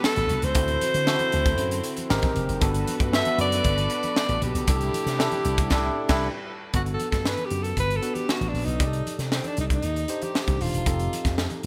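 Polished 1980s jazz-funk pop at 116 BPM in G major, breezy and urban, where a breathy, close-miked alto saxophone carries the melody up front over clean tine electric piano with subtle chorus, lush bowed strings in the background until 6.7 seconds, a punchy, gritty fusion kit with a high-tuned snare, a growly slap bass through an envelope filter, and very quiet, low-tuned congas, with a piano fill near 1.8 seconds, a band accent before the saxophone solo at 6.7 seconds, moving through chords like Gmaj9, Abmaj9 and Cm6 in a bright digital production with moderate plate reverb, as a section cut from a longer piece.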